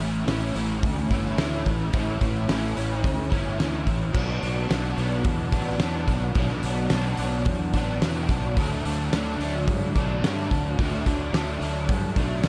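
A dark, small-room sound wraps this 12.5-second cut from a longer rock piece steeped in shoegaze and dream pop, its mood hazy and blissful at 109 BPM in a straight 4/4, centered on A mixolydian. An up-front, double-tracked electric guitar plays a crunchy, overdriven picked riff treated with ensemble chorus, moving through A, Bm at 4.2 seconds and D at 8.6 seconds. Underneath, a fingered electric bass adds a growly fuzz tone, heard both direct and amped with overdrive. A loose indie acoustic kit enters at 0.3 seconds, its pumping room sound carrying a fat snare, punchy kick, hi-hat and dark crash cymbals, placed up front alongside the guitar. Together the parts form a thick, dreamy wall of sound.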